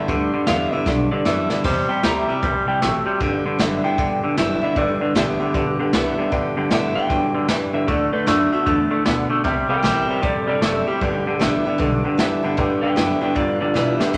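Retro and rollicking, this swung rockabilly excerpt opens with a compressed, twangy electric guitar riff up front with a warbly pitch drift, a boxy parlour acoustic guitar, a woody pizzicato upright bass in the background, and an airy brush drum kit with dark cymbals, a punchy kick and a couple of fills. From 0.5 seconds a slightly broken-up electric guitar through a small old amp carries the melody with vibrato, and at 4.8 seconds a detuned, jangly honky-tonk upright piano slips in very quietly. The mix sits in wet studio reverb, with audible lossy compression artefacts.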